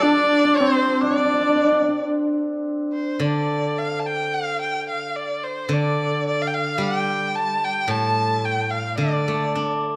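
A dark, gently reverberant recital-hall sound frames this wistful, graceful excerpt of Chinese traditional chamber music in D yu mode, moving at 108 BPM in 4/4 with a rubato feel. A clear erhu carries the smooth, vibrato-touched melody up front with portamento, while a husky horsehead fiddle in the background and a mellow, vintage-toned cor anglais add brief second lines that stop at 2.1 seconds, and a shimmering hammered dulcimer rings on as another second line until 5.6 seconds. Underneath, a silvery steel-string zither played with fingerpicks sits forward as accompaniment through to the end at 10.0 seconds.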